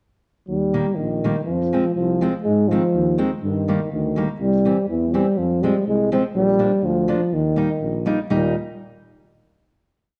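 A mellow euphonium leads this short, complete alpine folk dance tune from 0.5 seconds, playing up front in a classical style with light vibrato and a motif-based melody built from balanced period phrases. Beneath it, a tuba with a soft attack and light vibrato keeps a steady two-step pulse, placing root and fifth on the main beats. A fingerpicked steel-string acoustic guitar, woody and dark with the worn tone of old strings, joins at 0.7 seconds with off-beat triad chords that give the dance its festive, jolly bounce. The harmony moves through a simple cadential progression before the trio settles on a final chord at 8.3 seconds. A moderate recital hall reverb surrounds the small band, and the production has a dark, warm character.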